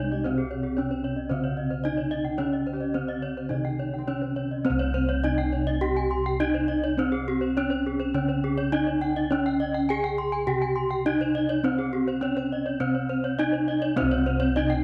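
Balinese gamelan at 103 BPM in C pelog, a brilliant, hypnotic cut from a longer piece, led by a close-miked, dry bronze metallophone melody played up front with horn mallets, over round, beating bossed gongs carrying the bass. Two more metallophones run arpeggios throughout, one bright and the other dark and smooth, their paired tuning producing shimmering beats, while a very quiet, band-limited metallophone with a vintage tone and wooden mallets adds low accompaniment until 4.6 s and returns at 14.0 s. A thumb-plucked concert harp traces a faint second line until 7.0 s, and a small room with moderate echo-chamber reverb holds the ringing bronze.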